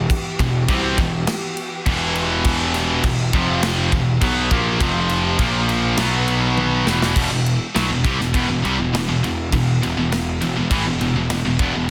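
The recording is dense and heavily limited, with little reverb, and this dark, relentless heavy metal excerpt moves at 102 BPM in 4/4 with a straight feel. Three bright, high-gain picked guitars drive the riff throughout. Two distorted guitars sit in the background, one of them with a scooped tone, while a double-tracked third stays very quiet beneath them. A growly, fuzz-toned electric bass with overdrive anchors the low end, and a polished studio drum kit sits up front with a punchy kick, a medium-tuned snare, toms and crash cymbal in an airy room. A very quiet, lush bowed string section adds sustained chords with vibrato over the opening half-time passage, moving through Em, F5, A#5 and B5. The strings drop out at 7.2 seconds, just as a drum fill ends that passage and the second section takes over.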